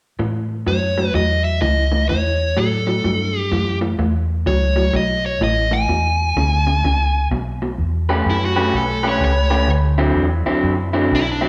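Electric blues shuffle at 126 BPM with a gritty, rollicking swing, cut from a longer piece and played live in one room with a moderate large-studio reverb. A slightly broken-up, lo-fi rhythm guitar through a small old amp carries the riff with spring reverb beside a round, punchy, foam-muted fingered bass, while a dark, smooth, overdriven lead guitar sings the melody from 0.7 seconds. The harmony moves from A to E7, and at 7.8 seconds the lead breaks into a solo over A9 and D9.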